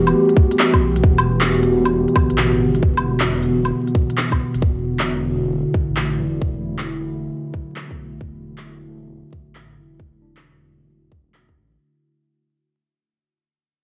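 A swung 4/4 groove at 134 BPM sets this melancholic, nocturnal future garage excerpt in motion, with a tight, overdriven electronic kick sitting up front from 0.4 s alongside crisp hi-hats, handclaps and woodblock from an organic electronic kit, both roughened by cassette tape saturation. Beneath them, a menacing detuned saw bass growls low in the register with a filter swell, pumping through sidechain compression. A warbling, nostalgic pad carries sustained chords up front, its slow attack and long release softened by chorus and reverb and bent by ring modulation into a lo-fi haze. In the background, a clean tine electric piano plays accompaniment through a low-pass filter sweep, analog delay and tape colouring. The harmony moves from Em7 to D/E at 4.6 s, while the whole passage fades out under light digital ambience and vinyl crackle, like a home recording dubbed onto cassette.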